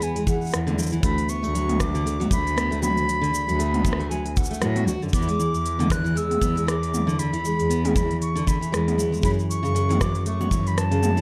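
Folktronica at 117 BPM in 4/4 with a light 16th-note swing, this short excerpt cut from a longer piece has a warm, playful mood and sits in E mixolydian, moving through E7, Bm7/D and back to E7 before reaching F#m7 at 9.2 seconds. A concert flute carries the melody high in its range with a pure, straight, tongued tone touched by digital delay. Beneath it, a full-bodied jumbo steel-string acoustic guitar picks arpeggios, its finger squeaks audible through a gritty vintage 12-bit sampler texture. A rich, bowed cello, played by one player with vibrato, holds the bass line close and up front with a smooth, even sound. An organic electronic kit of smooth hi-hats, rim clicks, shaker and toms has a tape-warm character re-recorded in a large room, while a tight, polished acoustic kick, airy with bright stone-room reflections, enters at 0.3 seconds and stops at 10.6 seconds. Light reverb and a small room ambience frame the whole blend.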